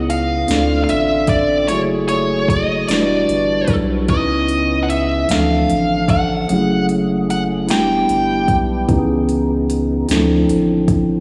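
A nasal, overdriven lead guitar with a parked wah sits up front, singing a high melody from 0.1 s until it stops at 8.6 s, trailed by slapback and tape echo. This slow, sultry, late-night R&B piece in six-eight, cut from a longer work, drifts through lush minor chords such as Dm9, F#m9, Em9 and C#m9. A mellow, clean tine electric piano carries the accompaniment, while a fat tonewheel organ holds lightly overdriven sustained chords in the background, with key click, chorus vibrato and a slow rotary speaker. Underneath, a deep, round analog bass with a filter sweep anchors the low end, and a produced electronic drum kit adds a soft kick, a sharp snare and crisp hi-hats with a touch of overdrive. A lush hall reverb gives the mix a big arena sound.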